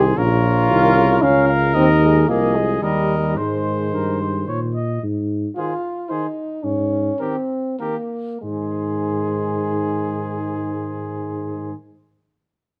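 Classical brass quintet music in a noble, warm mood, moving in a flexible three-beat rubato that slows between 4.2 and 8.4 seconds in this short passage cut from a longer piece. A mellow, vintage-toned trumpet carries the melody above a clear second trumpet with light vibrato and a soft attack. A roomy French horn and a tuba with vibrato sit up front, a soft-edged trombone stays in the background, and the whole quintet rings in a moderately reverberant large studio.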